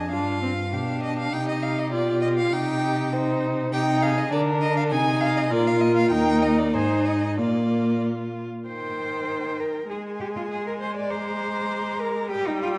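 A quick classical-period movement for string quartet, this restless, stormy passage moves at 100 BPM in 2/4 with a rubato feel, cut from a longer piece and tuned slightly low to A4 = 439 Hz. It opens in C minor, circling G7 and Cm chords, before turning to Eb major from 3.7 s and passing through Bb, Ab and Eb harmonies, with a new section arriving at 8.7 s that ends on Bb7/Ab. The first violin carries the melody high, from C5 up to Eb6, with a clear, focused, close tone and vibrato, while the second violin sings a second line in a warm voice with expressive portamento and a smooth top. Beneath them, the viola's rich, up-front accompaniment and the cello's focused bass, reaching from Eb2 up to D5, sit louder than the violins and give the texture a heavy lower weight. The quartet is heard in a wet recital hall with a reverb tail of 1.7 s, and the production is dark overall.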